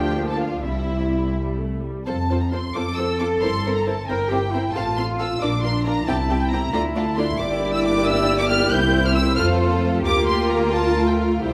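A lilting 6/8 pulse, stretched and pulled with rubato, carries this graceful, spirited classical-period fragment for string orchestra, cut from a longer movement, as a brief opening section gives way to a longer second one at 2.1 s. A dark, distant violin section sings the melody with vibrato over a rich, close second violin line, while woody, lush violas fill in the accompaniment and floating, pure-toned cellos share the bass with an up-front, warm double bass section. Every section is bowed sul tasto, and the ensemble sits in a wet recital hall reverb.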